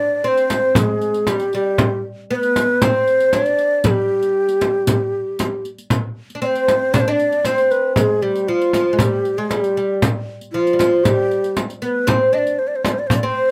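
A close, detailed recording with light reverb presents an Arabic maqam ensemble in G maqam hijaz, tuned to A4 = 438 Hz, moving at 117 BPM in a straight 4/4 with a hypnotic, longing mood. The breathy ney carries the melody up front, its end-blown reed cane tone showing vibrato and a crisp attack between F4 and Eb5. Beneath it, the fretless oud plays a second line from F3 to D4, plectrum-plucked on double strings with a woody, bright character. The riq enters at 0.4 seconds, adding bright jingles played with soft hands and heard close and dry, and the frame drum follows at 0.5 seconds, small and compressed with a saturated edge from hard hands. Cut from a longer piece, the passage moves from its opening section into a second one at 5.9 seconds, with both percussion parts falling away at 13.2 seconds as the ney and oud carry on to the close.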